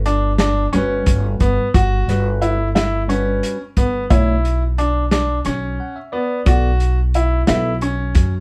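Progressive instrumental band music in 7/8 at 178 BPM (eighths), bright and intricate, played live in one room with moderate reverb, as a woody, thumpy pizzicato upright bass and a dry, muffled soul drum kit with a tight kick and a medium-tuned snare sit up front beside clear grand piano arpeggios, while a worn, slightly out-of-tune tine electric piano through a combo amp and phaser adds accompaniment, plays a fill at 5.5 seconds and carries into a brief break before the next section arrives at 6.5 seconds, over chords moving from Gmaj7 through Em9/G to Bmadd9 in this short cut from a longer piece.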